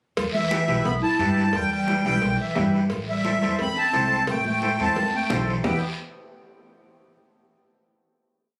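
Recorded on a phone in the room, this short, complete cumbia piece carries a light studio reverb and compression, giving it a roomy, lived-in sound. It is danceable and passionate in a straight 4/4, with an up-front, reedy accordion singing sweet, airy hook phrases high over the band, its light tremolo tuning adding shimmer. A dark clarinet with vibrato and a breathy subtone shadows it in a jazz-style harmony line, mostly in sixths, while a clean vintage combo organ with light vibrato pushes rhythmic triad chords underneath. The upright bass plays a woody, thumpy cumbia figure on steel strings, joined by bright, thin-skinned congas sitting in the background, a ringing cowbell and timbales kept close and dry, and a raspy, band-limited guiro scraping long and short strokes. The harmony moves from E minor to A minor seventh at 2.9 seconds, a drum fill arrives at 4.8 seconds, and the piece settles on a final E minor chord from 5.6 seconds.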